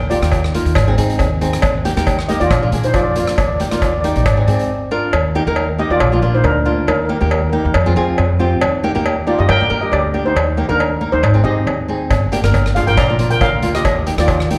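A lightly swung 4/4 groove at 138 BPM drives this sunny, festive calypso excerpt in Eb major. A shimmering lead steel pan, struck with medium rubber sticks, carries the melody, while a woody, thumpy upright bass sits up front with plucked steel strings. Fingerpicked flamenco guitar fills in the accompaniment with fresh strings and the odd finger squeak, and a vintage, band-limited cowbell with slapback echo rings along almost to the close. A polished street-band drum kit with a boomy kick, hi-hat and rim click plays until 4.7 seconds, drops out through a short break and most of the following passage, then returns at 12.1 seconds. The chords move mostly among Eb, Ab and Bb, with touches of Fm and Gm, and the whole thing sounds like a live gig heard through a venue's PA, with light reverb, recital hall reverb and studio ambience.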